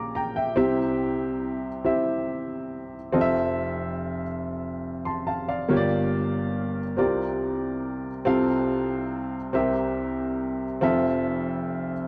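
A dark, warm mix bathed in a moderate plate reverb with a 3.3-second tail frames this jubilant yet reverent gospel excerpt in F major, where a woody, up-front upright piano plays alone for 12.1 seconds at a slow 47 BPM in a straight 6/8, ranging from F1 to D6 and tuned to A4 = 439 Hz, moving from Gm7/Bb and C through Fmaj7, Gm7, C9sus4, F/C and C7 before settling back on Fmaj7 at 10.8 seconds.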